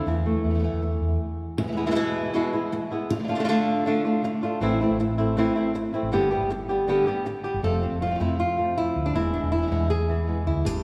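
A straight 4/4 pulse at 159 BPM drives this dramatic, passionate flamenco passage, cut from a longer piece. Up front, a dark, fingerpicked acoustic flamenco guitar carries the melody. A second, warm-toned flamenco guitar sits in the background playing stabs. A round, amped hollow-body electric bass, played with the fingers, anchors the low end; it drops out at the brief stop at 1.2 seconds and returns at 4.6 seconds. The harmony moves from Esus4 to E, then through Dm, Am, G and F before landing back on E. A long church reverb surrounds the ensemble with the resonance of a large hall.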